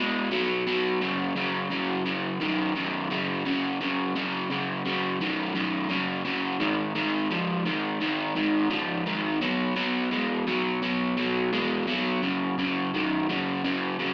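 In a straight, unhurried 4/4, a lone crunchy electric guitar struts through a swaggering, sunny rock passage cut from a longer live piece, its picked, double-tracked overdrive sitting up front with a slapback echo. The chords move from B5 to Gb5, then shift at 6.6 seconds into a second part that moves through Ab5, B5 and Gb5. Heard through the venue's PA in a moderate club reverb, the sound has the character of AM radio.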